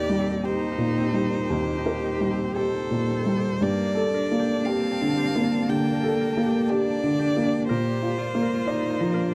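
Neoclassical piano and strings in a rubato 4/4, this short excerpt cut from a longer piece carries a longing, melancholic mood. A felt-muted upright piano sits up front with the accompaniment, its tone soft, mellow and intimate, with a short sustain and a vintage character. Above it a single violin sings the melody with rich, even vibrato, while a solo cello traces a second line beneath, shaped by a soft attack and expressive portamento. In the background a dark chamber string section holds sustained chords with a smooth top, and a concert harp adds ringing, fingerpicked arpeggios. The harmony moves from Cm7/Eb to Gmadd9 at 3.6 seconds and Bbadd9 at 7.7 seconds, all heard in a dry, close 1970s-style studio sound touched by light reverb.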